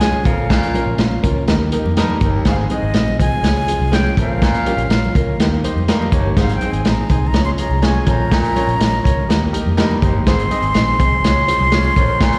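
A breathy, close-miked concert flute carries the melody with slapback echo in this danceable, uplifting stretch of uptempo 1960s-style soul at 123 BPM in Ab major, over an intimate grand piano whose short-sustain chords break into fills around 1.7, 4.9 and 9.5 seconds, a very quiet tonewheel organ with key click and fast rotary speaker, a muffled, lo-fi vintage drum kit up front, a round, punchy foam-muted electric bass, faint hard-handed congas, and a raspy, growling baritone saxophone riff with scooped notes, all heard as a live gig through the venue's PA with recital hall reverb.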